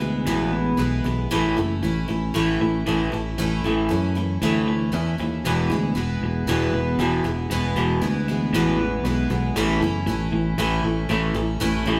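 A steady, straight four-beat pulse drives this rock passage cut from a longer piece, carrying a warm, open-road mood as the harmony moves between E and A. A picked twelve-string acoustic guitar sits up front with a shimmering, octave-doubled jangle. Beside it, an electric guitar through a small old amp plays a twangy, slightly broken-up riff. Underneath, a fingered electric bass gives a growly, punchy foundation that sits close and direct in the mix. All three parts play together from start to finish, like a band performing live in one room, bathed in a large, wet studio reverb.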